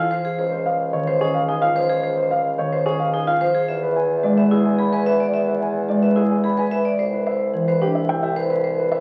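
An up-front concert grand piano carries the melody in this hypnotic, propulsive fragment of minimalist classical pattern music, its tone intimate and natural, with audible action noise, deep bass and long sustain. The pulse is a straight 3/4 at 109 BPM, and the harmony moves from Dbmaj7 to E and on to Cmaj7. A vibraphone struck with hard mallets spins metallic, ringing arpeggios beneath the piano, its fast motor vibrato giving it a vintage, band-limited shimmer. A close-miked marimba with soft mallets enters at 0.9 s with round, full, dry accompaniment and drops out at 7.7 s. A mellow bassoon holds the bass line throughout with light vibrato in a classical style. The whole passage sits in a recital hall's reverb and carries the crackle of a very old 78 rpm record.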